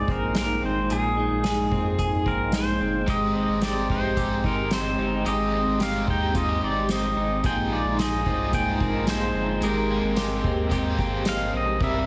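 Dream pop with a blissful, ethereal mood, this excerpt drifts on a twangy pedal steel guitar melody with volume swells and digital delay, over a hollow, flute-like pad and a clean electric guitar picking arpeggios through lush chorus and delay. A deep, saturated sub bass and a soft-mallet drum kit with dark cymbals, punchy kick and tambourine underpin the sustained Bb9sus4 harmony, which moves to Abmaj9 at 9.6 seconds. A crunchy overdriven guitar with tremolo joins at 3.1 seconds, all set in a wet studio reverb with a heavily compressed, radio-like sound.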